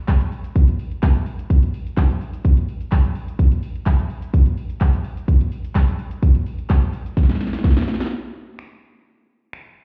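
A house drum kit leads this short pop excerpt at 127 BPM in a straight 4/4, its punchy kick and snare layered with finger snaps, handclaps, shaker and bright hats that sit up front in the mix. The mood is carefree and euphoric, with the groove landing as a drop from the very start and running to 8.1 seconds. A very quiet group handclap adds a human, hollow touch, sounding acoustic as if caught in a small room, and it drops out at 7.8 seconds. A drum fill from 7.2 seconds carries the kit into a brief closing passage that runs until the drums stop at 9.6 seconds. The digital ambience is heard as though muffled through a wall, shaded by a stone-room reverb and EQ, giving the electronic beat a distant, enclosed character.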